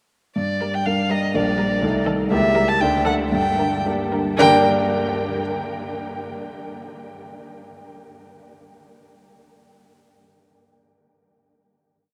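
A muted violin carries the stormy, urgent melody up front, its veiled, dark tone shaded with vibrato and portamento. A warm vintage grand piano marks bass and chords on the beats, while a second muted violin and a muted cello sit in the background with pizzicato accompaniment and sustained chords. This whole classical-period piano quartet movement is brief and quick in 2/4 with a rubato feel, set in a vast, echoing space, and it closes on a final chord from 4.4 seconds that the piano holds until 5.4 seconds.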